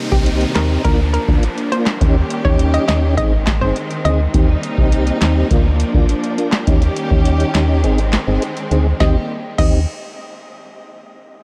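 A booming analog drum machine drives this bouncy, summery dancehall excerpt in Eb major at 103 BPM. Its deep kick, tonal snare, handclaps, metallic hi-hats and crash cymbal sit up front with a tape-warm, 12-bit sampler grit, and a short room colours the snare, claps and hats. A punchy, round FM bass anchors the low end with a dark, fast-attack tone, while a mellow tonewheel organ fills the middle through chorus vibrato and a fast rotary speaker. A hollow, nasal square-wave pluck carries the melody, detuned and bouncy with chorus and analog delay, and a lush, bowed studio string section holds sustained chords that pump against the sidechain. An electronic downlifter sweeps in the background at the start. The chords cycle through Eb6, Bb/D, Eb7 and Ab, the kick drops out from 7.8 to 9.0 seconds, and the pluck returns as a new section begins at 9.0 seconds, all bathed in light digital ambience.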